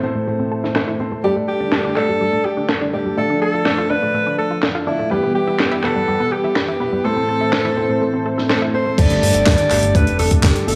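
Gentle reverb and a small-room ambience frame this melodramatic, danceable Italo disco excerpt at 124 BPM, built on a smooth, warbling, detuned pad, a round, chorused pluck arpeggio and dark, vintage baby grand piano stabs, with filter sweeps on the pad and arpeggio through the first 9.0 s. A dry, tight funk kit with bright cymbals, handclaps, toms and a high-tuned snare joins under gated reverb, while a breathy, distant alto saxophone carries the up-front melody with light vibrato over Am, Gsus2, Dm and Em. At 9.0 s a glossy, pulse-wave synth bass and a thumpy, overdriven electronic kick arrive as the harmony returns to Gsus2.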